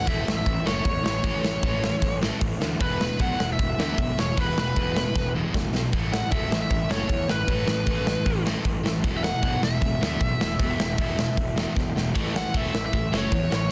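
A biting lead guitar and a sludgy distorted guitar open this upbeat, energetic punk rock excerpt together, with the lead playing a bright, overdriven melody coloured by tape echo. Beneath it, the sludgy guitar grinds out a riff in the background, joined almost at once by a growly, fuzz-laden picked bass. A big acoustic rock drum kit sits up front in a straight 4/4, its punchy kick and medium-tuned snare ringing in a large room, with drum fills at 5.1 and 11.8 seconds. The harmony moves between A and E, and at 12.1 seconds a tight, distorted guitar slips in behind the others with a second riff. The dense, heavily limited modern master keeps the sound dry and close, with little reverb.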